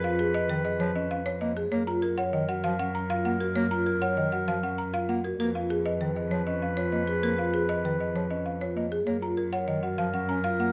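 A hard-mallet folk marimba opens this hypnotic, bright excerpt of minimalist classical pattern music with a woody, dry, rustic melody placed up front. Alongside it from the start are ringing, airy vibraphone arpeggios played with soft mallets and a fast motor vibrato, a distant, roomy clarinet carrying a second line, and a focused, bowed cello bass with vibrato. A warm bass clarinet accompaniment joins at 0.5 seconds, and the harmony alternates between two chords in a moderate recital hall reverb.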